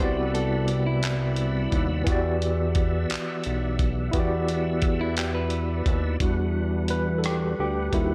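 Yearning and sultry, this slow six-eight R&B piece in E minor sways at 58 beats per minute, moving from a lush Cmaj9#11 chord to Em9 at 2.1 seconds. A barky, lightly overdriven tine electric piano sits up front through a combo amp, its fast tremolo shimmering across the accompaniment before it takes a solo from 6.2 seconds. Beneath it, a fat analog bass with a detuned sawtooth tone, quick attack and long sustain anchors the low end, while a reedy tonewheel organ holds sustained chords with key click, chorus vibrato and a slow rotary speaker. A dusty, sampler-style drum kit enters at 0.3 seconds with a thumpy kick, gritty compressed handclaps, hi-hat and rim clicks, sounding as if re-recorded in a large room. A dark, clean, picked electric guitar adds a brief second line in two short phrases, and the overall sound stays dry and close, with little reverb, in this cut from a longer piece.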